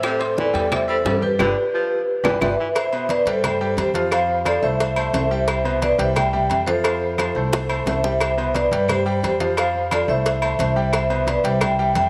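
A straight 4/4 salsa groove at 176 BPM drives this festive, joyful excerpt in C major: dry, round bongos and cowbell sit close, with low-tuned congas and woody, vintage-toned claves in the background, and distant timbales and agogo bells ringing in a large room. A metallic vibraphone with fast motor vibrato carries the melody up front, over a brilliant concert grand piano with deep bass and a dark, thumpy pizzicato upright bass on gut strings, while a breathy, whispered baritone saxophone adds an intimate second line until 2.7 seconds. A drum fill and band accent arrive at 1.4 seconds, and the harmony then settles into a Cmaj7 to Fmaj7 sway, all bathed in a moderate plate reverb.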